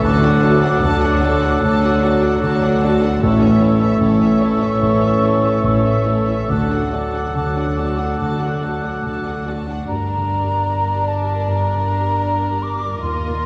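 Cinematic, emotional orchestral film score in a rubato 4/4, bittersweet and moving, cut from a longer piece and heard from further back in a wet concert hall. A violin section carries the melody with light vibrato and sul tasto bowing, while a darker, very quiet second violin section, a hollow silver flute, a solo oboe and a solo clarinet add second lines over a deep-voiced grand piano, a floating viola section and soft-attacked French horn chords. Cellos and woody double basses hold the bass in the background; the clarinet and oboe stop at 9.5 s and the horns at 9.6 s, just before a new section begins at 9.9 s.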